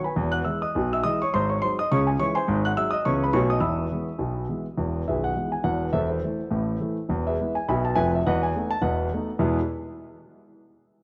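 A home cassette recording places a solo concert grand piano, warm with a deep bass, short sustain and an up-front presence, in a lush hall reverb, with a cassette-tape color on the piano. Cut from a longer piece, this exuberant, playful stride jazz moves at a brisk 207 BPM in 4/4 with swung eighth notes, in E major tuned to A4 = 437 Hz. Its harmony runs from E through G#7, C#m and B7 and later turns to Am/E, while the piano spans B0 to F#6 until it stops at 9.6 s.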